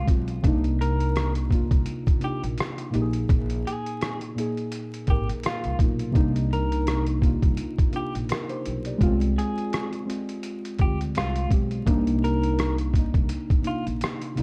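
Vinyl crackle and light reverb frame this reflective, melancholic lo-fi hip hop excerpt in C minor, moving at 84 BPM in 4/4 with a gentle 16th-note swing over chords like Cm9, Bb7sus4 and Ab6/C. Up front sit muted, felt-like synth keys, dark and warbling with chorus and a low-pass filter, alongside a muffled, pitched-down sampler-style drum kit of thumpy kick, hi-hat and rim click, while a woody pizzicato upright bass holds the low end. Above them, a slightly broken-up electric guitar through a small old amp plays a quiet melody soaked in harmonic tremolo, tape echo and a low-pass filter, dropping out at 13.8 seconds just before the piece is cut at 14.4 seconds.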